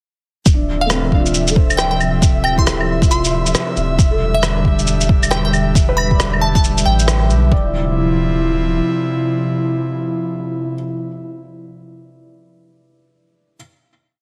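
This short, complete future garage piece in D dorian opens at 0.5 s with a ghostly, melancholic groove at 136 BPM, swung on the sixteenths. A muffled, overdriven two-step kick sits up front, alongside a skittering shuffle of shaker, claves and rim click that sounds re-recorded in a large room. A round sine sub bass holds long gliding notes, and an airy, breathy pad with chorus and 12-bit sampler grit sustains Dm9 moving to Em7, pumping against the kick along with the bass and piano. Over this, a soft felt-muted upright piano scatters intimate notes with audible action noise and tape echo, while a glassy, crystalline wavetable pluck plays short bright phrases in the upper register, and a very quiet flickering granular texture holds a high note. After a band accent just before 7.5 s, the groove falls away to a final Dm9 chord, and the piano carries on until 13.6 s. The whole piece carries a heavily compressed, radio-like sound with light digital ambience.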